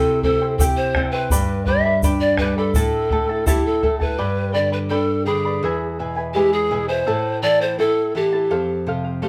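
Andean folk in A minor at 84 BPM in a straight 2/4, wistful yet festive, this short excerpt from a longer piece is led by a breathy, woody pan flute carrying the melody up front with vibrato and tongued chiff, over a fingerpicked nylon-string guitar with a bright, fresh-string sound and a mellow, shimmering charango whose double strings add some octave doubling. A round bombo and a grainy egg shaker join briefly, both dropping out by 4.2 seconds as the harmony moves from C, G and Am toward E and F. The ensemble sits a little back in a wet studio reverb.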